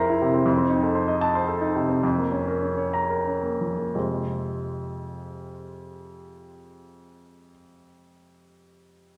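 Stormy and agitated, this fragment of a classical virtuoso piano study in 6/8 features a solo baby grand piano with a polished, present tone, its rubato pulse slowing through the first 4.0 seconds over F7 and Bbm/F harmonies before arriving on Fm, set in a wet recital hall reverb and heard from further back in the room.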